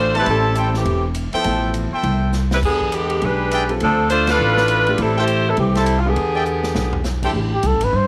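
A hard-swinging 4/4 pulse at 204 BPM drives this short, sultry big band excerpt in A minor, cycling through Am7, E7#9 and Dm7. A bright saxophone section carries the melody up front with light vibrato and a smooth top, while a clear trumpet section punctuates with stabs set off by a slapback echo. Underneath, a woody, growly pizzicato upright bass sits close and present, and a concert grand piano with deep bass comps quietly in the background. The swinging drum kit, airy and polished with dark cymbals, a medium-tuned snare and punchy kick, throws in fills at 2.3 seconds and again just before the band's phrase closes, with a full-band accent at 4.3 seconds. At 7.5 seconds a dark, breathy solo trumpet steps forward, close-miked, with scooped notes and vibrato, as the fragment cuts off in a small, lightly reverberant room.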